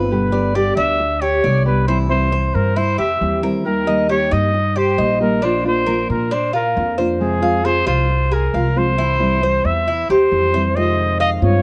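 Latin music in F minor at 135 BPM in a straight 4/4, this short cut from a longer piece carries a warm, danceable mood across about 11.6 seconds. A breathy trumpet carries the melody from 0.1 s, up front and intimate, with a soft attack, gentle vibrato and a whispered, vintage pop-style tone. Beneath it, a Cuban tres plays mellow, picked arpeggios on metallic double strings, some of them octave-doubled, while a nylon-string guitar supplies full-bodied, fingerpicked accompaniment with a deep classical character. An upright bass, played pizzicato on gut strings, sits up front with a woody, dark, thumpy sound. The harmony moves through G, C, Eb, Bb and Fm, returns to C, and arrives on Fm7 at 10.8 s. Light reverb surrounds the ensemble, and the whole recording has the worn, warbling pitch drift of old cassette tape.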